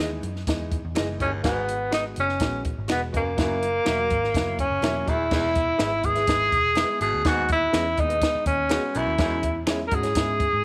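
Warm and uplifting, this 124 BPM 1960s-style soul groove puts a breathy, whispered tenor saxophone with scooped notes and vibrato up front over a raspy, gritty baritone saxophone riff entering at 1.2 s, a dry cocktail drum kit with dark cymbals and a high-tuned snare, a round, punchy foam-muted picked bass, a background grand piano with audible action noise, clean fingered electric guitar stabs touched with subtle chorus, and very quiet finger snaps from 1.0 s, set in a small room with light reverb as the chords move from Emaj7 through G#m7 and F#7.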